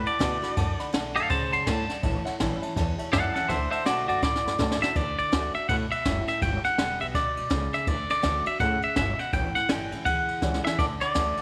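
A twangy, compressed electric guitar sits up front in this upbeat, retro rockabilly piece at 164 BPM with a swung feel in D major, taking a clean solo through the first 5 seconds, coated in spring reverb and tape echo. A full-bodied jumbo acoustic guitar is picked in the background alongside a growly, thumpy pizzicato upright bass, while a brushed drum kit with dark cymbals, a high-tuned snare and a boomy kick adds fills. A dark, mellow upright piano plays short notes until 4.9 seconds and returns at 10.8 seconds, all in a small, natural room.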